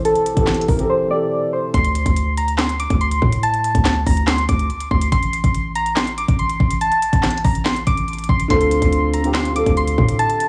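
Round, soft electric-piano-like synth keys carry a D minor melody through chorus, tremolo, a low-pass filter and digital delay, alongside a mellow, boxy grand piano that drops out at 1.8 seconds and returns at 8.5 seconds, a deep, boomy 808 bass and a knocking trap kit with sharp snare, handclaps and crisp hi-hats, all in a dark, hard-hitting half-time groove at 142 BPM in a dry, small room, cut from a longer piece.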